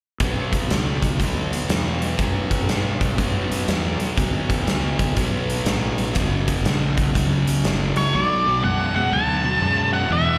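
An octave-fuzz lead guitar takes the melody at 8.0 seconds, dark and distorted with a slapback echo, sitting high and up front over a brooding, gritty slice of swung blues rock power trio with a southern rock edge. Beneath it, a thick fuzz guitar, double-tracked and picked, drives the riff from the start with its own distortion and slapback echo. A fingered electric bass adds a growly, punchy low end through overdrive. A big rock drum kit plays hi-hat, kick and snare with a punchy kick and a medium-tuned snare in a bright stone room, dropping out at 8.0 seconds just as the lead arrives. The sound is that of a live gig heard through the venue's PA, with light reverb and a recital hall reverb, and the fragment is cut from a longer piece, moving from Bmadd9 to F# before settling on Bm7.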